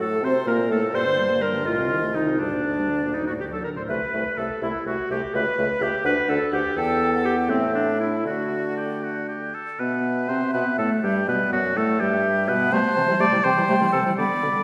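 Classical-period music for wind quintet, a quick, dramatic and stormy movement in G minor and 6/8, taken at roughly 77-86 BPM in dotted quarters with a rubato feel, heard here as an excerpt cut from a longer piece. A pure, hollow flute with soft attack and vibrato carries the melody over a close, up-front oboe second line, while a present French horn and a distant, mellow clarinet fill in the accompaniment above a dark, roomy bassoon bass, all five playing throughout. The ensemble sits further back in a scoring stage with a reverb tail of 1.6 seconds, and a new section begins at 9.8 seconds.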